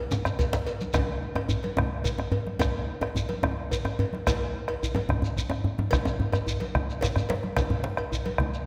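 A festive, powerful West African drum ensemble rolls in 12/8 at 145 BPM with a straight feel, opening on a drum fill that returns at 7.0 seconds, as a round, up-front bombo anchors ringing congas, metallic cowbell, grainy shekere, a deep djembe and a soft-handed djembe set in the background, all carried into a concert hall's lingering reverb in this brief cut from a longer piece.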